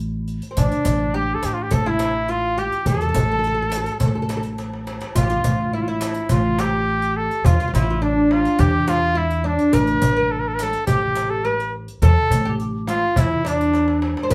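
A straight 4/4 pulse at 105 BPM comes from a crisp, distant metal-shell darbuka struck with hard hands and a close, dry riq with bright jingles, with drum fills at 4.6 and 13.7 seconds, in this soulful, melancholic excerpt from an Arabic maqam ensemble in A maqam bayati. Up front, a thumpy pizzicato upright bass with steel strings holds the low end. A woody, deep fretless oud, plectrum-plucked on double strings, plays a second line beneath the clear, punchy flugelhorn, which carries a close-miked, pop-style solo melody with vibrato, as the band plays live together in one room within a wet studio reverb.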